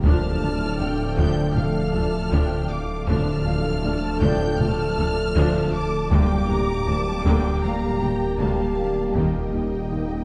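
Heard from further back in a wet scoring-stage reverb, this brooding, vast excerpt of a hybrid orchestral and electronic film score sets a lush, soft-attack violin melody with vibrato above a second violin line. Focused violas, a silky analog string pad with ensemble chorus, and mellow vintage-toned French horns hold the sustained harmony, while a dark, ringing harp-like synth pluck with chorus and digital delay spins arpeggios in the background. Underneath, a menacing, saturated detuned saw bass sounds alongside very quiet woody double basses and cellos, and a close taiko ensemble struck with hard sticks drives the cue as the chords move from D minor to G minor over D and reach E-flat at 9.2 s.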